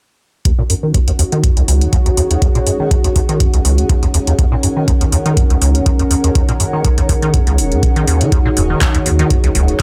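Gritty and trippy, this acid house excerpt in Eb minor moves at 122 BPM with a light 16th swing, led by an up-front, squelchy square-wave acid bass riff under a constant filter sweep with overdrive, lush chorus and digital delay, while an overdriven deep electronic kick and a booming analog drum machine with metallic hi-hats and handclaps, both re-recorded in a small room, drive beneath a smooth, dark analog pad holding an Ebm7 chord with sidechain pumping, a cloudy, evolving granular pad drifts in at 1.3 s, and a round, detuned analog bass surfaces only at 8.6 s, all set in light reverb.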